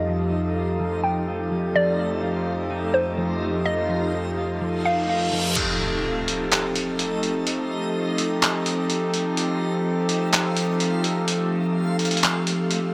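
A warbling, nostalgic pad sits up front through this dreamy, floating cloud-rap excerpt, holding lo-fi sustained chords on F7 with slow attacks, long releases, chorus and its own reverb. Around it, a reversed, detuned granular texture swells with a bright sheen, while a hollow, bouncy square-wave pluck carries the melody in a dark, chorused and delayed tone. A clean, fingered electric guitar plays compressed arpeggios through spring reverb and delay, and a filter sweep runs through the opening passage until 5.6 seconds, with the pluck dropping out at 5.1 seconds. An electronic reverse cymbal rises from 4.9 seconds into an impact, and at 5.6 seconds a gritty, pitched-down, sampler-style trip hop kit enters with crash cymbal, handclaps and hi-hat, compressed and re-recorded in a small room. At 126 BPM in a half-time 4/4 feel, the whole piece drifts in a moderate shimmer reverb with a 5.8-second tail.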